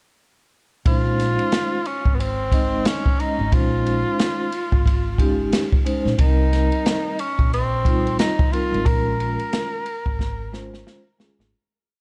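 The recording has a dark, smoky studio sheen, with reverb that gives this short, complete hip hop piece a cool, late-night jazz-hop mood and a relaxed swung lilt. Up front, an airy acoustic jazz kit lays a boom-bap beat under a swung ride cymbal, its boomy kick, medium-tuned snare and dusky cymbals roughened by vintage 12-bit sampler grit. A woody upright bass plucks a syncopated line on steel strings, while a close-miked vibraphone with soft mallets rings with a metallic shimmer and medium motor vibrato, pushing full drop-2 chords. Over them, a mellow tenor saxophone plays a motif-based solo of song-like phrases with subtone, soft attacks, scooped notes and vibrato, trailed by tape echo. The harmony moves from Bbm11 to Cm7 and back to Bbm7 as the piece fades out from 8.9 seconds, with a drum fill closing it from 10.2 seconds.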